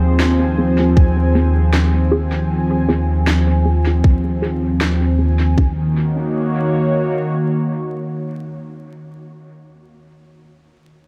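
Dark production with light reverb and a bed of vinyl crackle frames this meditative, spacious ambient dub passage, lifted from a longer piece and carried by a gently swung feel. A smooth, warbling analog pad with lush chorus sits up front, while a resonant, bubbling stepped-filter texture glints in the background and muted, full-bodied chord stabs drift through phaser, cassette tape colouring and dub echo. A woody electronic snare trailing dub echo and a tight electronic kick, up front from 1.0 seconds, drive the opening stretch. At 5.6 seconds the bubbling texture drops away as the harmony settles onto a minor seventh chord.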